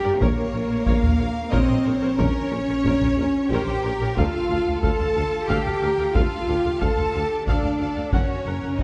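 At 91 BPM in a straight 3/4, a taiko ensemble struck with heavy sticks drives this heroic, epic orchestral film-score excerpt, entering at 0.2 s alongside a tuba sitting in the background on the bass line with the bowed double basses and cellos, under mellow, tight French horn chords that stand forward in the mix. Above them, a lush violin section with focused vibrato carries the melody while a second, smooth violin line and a viola section with an even, smooth top fill the accompaniment, moving through Bbm, Dm and F# harmonies. Moderate scoring-stage reverb wraps the dark, warm production.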